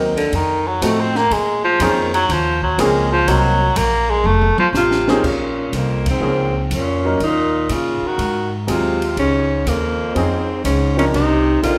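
This short excerpt from a longer piece opens with piano and upright bass, joined almost at once by a baritone saxophone that takes a solo through the first 5.2 seconds over a Bb minor swing groove at 122 BPM. The mood is late-night and smoky, with the piano comping in a clear, slightly worn and intimate tone where the action noise is audible, while the pizzicato bass sounds woody and thumpy, sitting up front. The baritone sax carries a soft attack, vibrato and a vintage character, and a drum fill around 4.2 seconds leads into the alto saxophone's entry at 4.8 seconds with a clear, subtone melody. The drum kit stays back in the mix, with dark cymbals, a high-tuned snare and a boomy kick, and the band hits an accent together at 6.0 seconds as the harmony moves through Bbm9, Ab7 and Dbmaj9 before closing on Cm11. A recital-hall reverb gives the small group the spacious, wet air of a church or concert hall.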